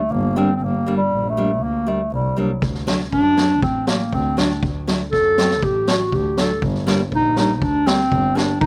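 A dark, classical-style clarinet carries the melody up front in this festive yet bittersweet klezmer fragment at 120 BPM in straight 4/4, tuned to A4 = 437 Hz and moving from G minor to D and back. A bowed, muted double bass with vibrato and a bright, fingerpicked nylon-string guitar with slapback echo accompany it from the start, and a street-band drum kit with a boomy kick and high-tuned snare joins at 2.6 seconds. The outdoor recording is dry, with little reverb.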